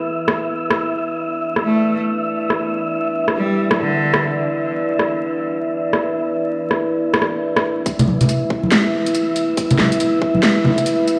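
A dark, deep analog pad opens this meditative, brooding slice of deep dubstep, holding sustained chords with a subtle chorus while a breathy, wind-like tuned noise texture hovers above it on E5. At 140 BPM in a half-time 4/4 with a swung 16th feel, a garage drum kit enters almost at once, its cracking snare and warm hats dulled by low-pass filtering and set up front. From 1.6 to 4.4 seconds a clear, focused cello plays a short bowed melody with vibrato, trailed by dub echo. A build-up begins at 7.9 seconds as a tight, filtered electronic kick drum arrives alongside bright, saturated congas played with soft hands. The whole mix sits in a huge ambient reverb, as if played on a big sound system in a bare room, with vinyl crackle beneath it.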